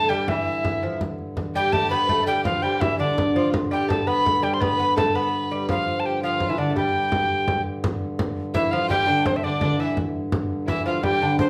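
Heard in a wet studio reverb with the band playing live in one room, this festive, rustic medieval dance excerpt in G mixolydian moves in 6/8 at 112 BPM, led by an up-front, breathy, chiffy soprano recorder over a delicate fingerpicked gut-string lute, a focused bowed fiddle with light vibrato in the background, a reedy, boxy pedal harmonium drone and a close, dry frame drum struck with hard hands, turning to a new passage at 7.8 s.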